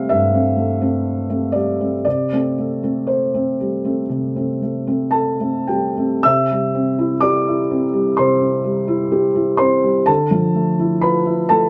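Neoclassical minimalist piano with a tender, intimate mood, this short passage cut from a longer piece moves in a slow, unhurried rubato. A felt-muted upright piano plays alone throughout, its soft, mellow tone sitting up front and ranging from low bass notes to the high upper register, as gentle C6 and Am7/C harmonies give way to a new section at 6.2 seconds that moves from C to Dmadd9. A moderate studio reverb adds a modest sense of room around the close, hushed sound.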